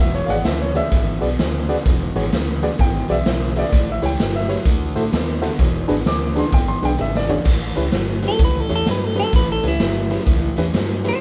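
A swung 4/4 shuffle at 128 BPM drives this gritty, rollicking electric blues excerpt in A mixolydian, where a woody, intimate upright piano solos over E9, A9 and D9 chords until 7.5 s, backed by an overdriven semi-hollow guitar riff, a round, foam-muted fingered bass, a reedy, barky electric piano with overdrive and fast tremolo, and a punchy, up-front garage drum kit whose fill at 7.0 s leads into the second section at 7.5 s, where a twangy, clean electric guitar melody enters at 8.3 s, the band playing live together in one room with light reverb.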